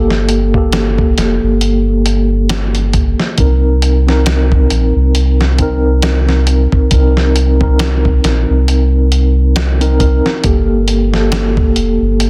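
Brooding and cinematic, this short trip hop passage is cut from a longer piece and moves at an unhurried pace with a swung sixteenth-note feel. A mellow tine electric piano carries the accompaniment throughout, its clean, direct tone colored by tremolo and tape echo as it moves from Gmadd9 to Cm7 at 3.4 seconds and back to Gmadd9 at 10.4 seconds. Beneath it, a soft dub sub bass sits deep and round, its sustained, fast-attack tone blending triangle and square wave character. The dusty soul sampler-style drum kit enters at 0.1 seconds with a thumpy kick, a medium-tuned snare and hi-hat, sounding gritty, compressed and tape-warm, as if re-recorded in a large room. All three parts sit up front in a dry, dense, heavily limited modern master.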